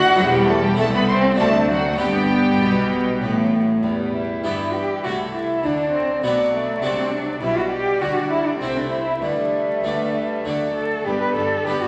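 Festive and lively, this short section cut from a longer baroque-style concerto movement moves at 99 BPM in a straight 3/4, in G major, with solo episodes set against the ensemble. A single cello, warm, expressive and gliding with portamento, carries the melody up front from F#3 to B4, while a brilliant, full Flemish-style harpsichord with three sets of strings sits beside it, plucking the accompaniment across a broad range. Behind them, two rich, focused chamber violin sections play with vibrato, one taking a high melodic line reaching F#6 and the other a second line with a smooth top. A distant, even chamber viola section fills in the middle, and from 0.2 seconds a lush symphonic cello section and a studio double bass section supply the bass. The harmony moves from Em through Am/C and D7 to G, then past a Dsus4 that settles on D before closing on G at 11.1 seconds. A wet recital-hall reverb and a layer of vinyl crackle give the whole an aged, resonant sheen.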